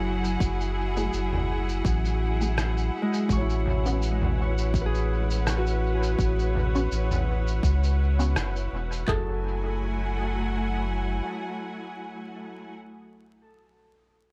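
Ambient dub at 83 BPM in F# minor with a light 16th-note swing, this meditative, hazy excerpt from a longer piece moves from F#m9 to A69 over vinyl crackle and a light reverb. A lush, distant bowed string section holds sustained chords over a round, up-front sub bass, while a glassy sine-tone texture with drifting overtones hovers in the background. An overdriven deep house kit with a deep kick and handclaps joins a muffled, pitched-down sampler kit with dub-echoed cabasa and rim clicks, a detuned, phased chord stab, and, from 3.0 s, a ringing fingerpicked Celtic harp playing tape-echoed arpeggios, with both drum kits dropping out around 9 seconds.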